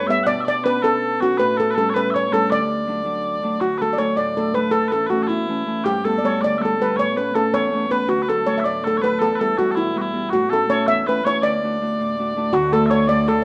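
A rollicking 6/8 Celtic jig at 108 BPM in D major, this lively folk excerpt pairs a shimmering steel pan melody played with soft rubber sticks against a sweet, vibrato-tinged second line on mellow small bagpipes, over a ringing, thumb-plucked Celtic harp accompaniment in moderate studio reverb, until a veiled, bowed muted cello slides in on the bass at 12.5 seconds.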